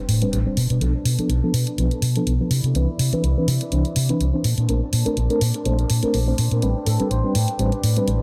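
Sensual and funky, this brief filtered disco house passage at 124 BPM in A minor opens with a background sub drop over gritty, low-passed studio strings holding sustained chords, while a dark, round, overdriven fingered electric bass sits up front beside a small-room electronic hi-hat and a reedy electric piano shimmering with fast tremolo, phaser and dub echo, before a mellow trumpet section slips in briefly at 6.9 seconds, all inside an echo-heavy mix under a filter sweep.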